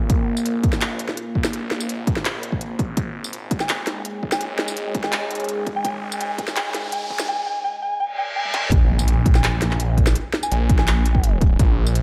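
Dark and spacious, this half-time drum and bass excerpt opens as a build-up under a filter sweep. A deep, moody ambient pad holds sustained chords through 7.3 seconds, while a swirling, thick, detuned saw bass sits up front with phaser and tube saturation, and a soft, pure FM bell carries the melody with chorus and dub echo from 3.6 seconds. A heavy electronic kick and an industrial kit with a clanging snare, crisp hats, handclaps, tambourine and toms drive the groove, and background risers and a reverse cymbal lead into a drum fill and an impact as the drop lands at 8.7 seconds, all set in a moderate echo-chamber reverb.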